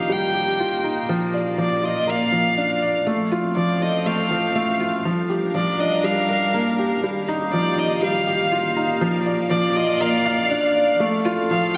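A felt-muted upright piano sits up front with a soft, intimate riff, its delayed notes blending with a rich, smooth solo violin melody carried on vibrato through this cinematic, hypnotic piano-and-strings electronica excerpt at 121 BPM. Beneath them, a chamber string section holds filtered, sul tasto chords with a soft attack, moving through Ebadd9, Bb, F and Gm7 as the passage builds. A wet plate reverb soaks the whole mix in a dreamy haze.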